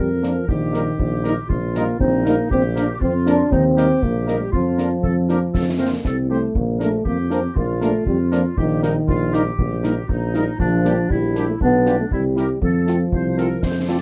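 A rousing, spirited military-style march for wind band at 119 BPM in 2/4, with a roomy tuba up front on the bass, a dark, soft-attacked euphonium and a clear woodwind section carrying second lines, a tight French horn section in accompaniment, and a vintage-toned trumpet section with vibrato voicing the melody in the background, all driven by close concert snare and bass drum with bright cymbals and settling into F major from 10.6 s in this light-reverb, mellow-sounding excerpt of a longer piece.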